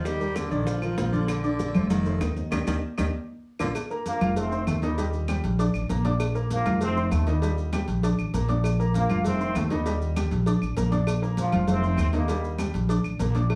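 A punchy trombone section with light vibrato carries the melody from 4.1 seconds, up front over a thumpy, dark upright bass and a worn concert grand piano comping through Ebmaj7, Bb and F7 changes in this danceable, festive salsa excerpt at 197 BPM in Bb major. A raspy, breathy baritone saxophone plays a second line only until 3.7 seconds, as a band accent and drum fill mark the turn into the next section. Bright, high-tuned congas, tight bongos and cowbell and woody claves keep the percussion busy in the background, while grainy maracas sit close and dry, all set in a small room with wet studio reverb.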